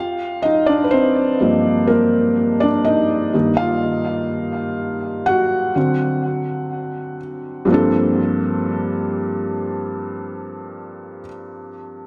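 A felt-muted upright piano carries this moody, sensual R&B fragment on its own, its soft, mellow tone sitting up front and intimate with audible action noise adding a vintage, close-up character. The piano plays alone throughout the roughly 12-second clip, ranging from G2 up to F#5 in a slow, straight 4/4 feel. Its harmony moves from Gm7 through Ebadd9/G and D7 before settling on Gm11 at 7.7 seconds, where a second section begins. A diffuse ambient delay trails the piano, and a moderate plate reverb with a 3.0-second decay soaks the whole mix in a dreamy haze. The result is smooth and hushed, a brief cut from a longer piece that lingers in late-night intimacy.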